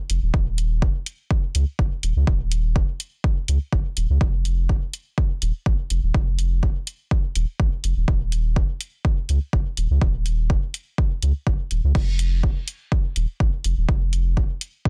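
Dub techno with a meditative, hypnotic mood, moving in a lightly swung 4/4 pulse across this roughly 15-second cut from a longer piece. A pure sine sub bass sits up front, deep, clean and smooth, with a fast attack and sustained notes ranging from Eb1 to Db2, its level pumping through sidechain compression. The electronic kick drum is punchy and layered, placed forward in the mix and re-recorded in a small room. A deep house drum kit adds crash cymbal and dark hats further back, also layered and given the same small-room character. The sound is dry, with little reverb, and the master is dense and heavily limited.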